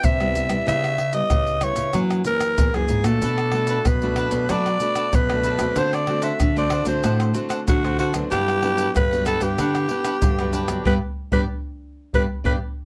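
A straight 4/4 groove at 94 BPM from close, dry maracas, tight surdo, pandeiro and tamborim played with hard hands drives this joyful, festive samba-and-choro excerpt in G major, where an up-front, raspy, breathy alto saxophone solo with scooped notes and light vibrato growls over a small, fingerpicked nylon-string guitar and a second nylon-string guitar carrying the bass with fresh strings and audible finger squeak, while a crisp picked cavaquinho joins at 3.2 seconds before a band accent at 10.9 seconds, all in light reverb.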